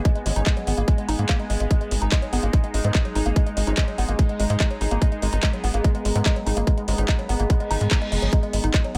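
Driving and alien, this psychedelic trance excerpt rides a tight electronic kick and a punchy, saturated sawtooth sequencer bass, both up front, while a drum and bass kit adds handclaps and metallic hi-hats. Above them, a woody, warbling wave-folded pluck riff trails dub echo, a resonant stepped-filter texture bubbles through sustained chords, and a deep, moody ambient pad sits in the background, all three carrying chorus and sidechain pumping. A very quiet, nasal vowel-sweep wobble bass drops out at 7.0 seconds and a reverse cymbal sounds at 7.7 seconds, all in a mix with little reverb.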